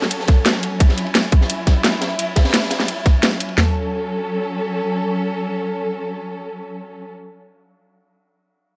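Overdriven, up-front electronic drum and bass kits drive this aggressive, mechanical excerpt of dark technical drum and bass at 173 BPM in F# minor, one layered kit pairing a cracking snare with bright hats while another adds a tight kick and toms from 0.3 seconds, with a gritty, saturated acoustic breakbeat kit sitting in the background under a rolled-off top. Above them a lush, bowed symphonic string section holds sustained F# minor chords with expressive vibrato, pumping against the sidechain and carrying on alone after the drums stop around 3.7 seconds until 7.1 seconds. The mix sits in a small room with light reverb.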